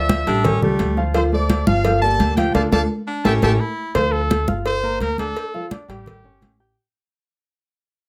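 A clear, punchy trumpet section leads this short, passionate salsa cut in D minor at 171 BPM, carrying the melody with a smooth top until 3.5 seconds, while a bright baritone saxophone with vibrato adds a second line from 0.3 seconds. Underneath, a woody, thumpy pizzicato upright bass sits up front, and a polished baby grand piano with short sustain supplies the accompaniment over the Dm7, Gm7 and A7 changes. Close, dry congas struck with hard hands and a tight, high-tuned cowbell keep the danceable drive going. A drum fill and a band accent mark the turn of the phrase before a solo trumpet with light vibrato and slapback echo takes the melody at 4.0 seconds as the music fades out. Moderate studio reverb gives the whole ensemble a compact sense of space.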